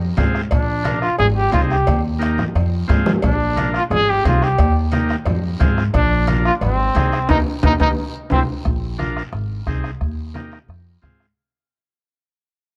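A brisk, straight cumbia groove at 177 BPM in 4/4 drives this short, danceable cut from a longer Latin piece in F dorian, with a passionate edge. The close, soft-beater bombo anchors the beat and the woody, pizzicato upright bass sits up front, while low-tuned, thick-skinned congas played with soft hands sound distant in a large room, and a raspy, band-limited guiro adds a faint scrape. Ringing metal-shell cowbell and timbales play until 8.4 s, while drum fills arrive around 1.9 s and 7.8 s and a band accent lands before the section change. A breathy, whispered trumpet with vibrato and a soft attack carries an intimate, pop-style solo melody up front, backed by a buzzy, clean combo organ cycling through Fm, Bb, Ab and Eb. After a brief break and a C chord, the music moves into a new section at 8.7 s and fades out, all in a dark, warm production with light reverb.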